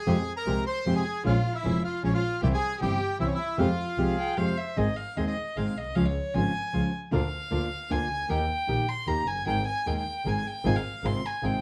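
Tango in 3/4 at 153 BPM with a rubato, tense and dramatic feel, as a reedy, close-miked bandoneon carries the melody in F harmonic minor until 4.3 s over fingerpicked nylon-string guitar, background bandoneon stabs and a smooth, bowed double bass up front, while an earthy, nasal violin plays a second line, a pure, tongued flute briefly joins from 4.0 s, and at 4.8 s the music turns to Ab major for a violin solo to the end, all in a moderate studio room with vinyl crackle in this fragment of a longer piece.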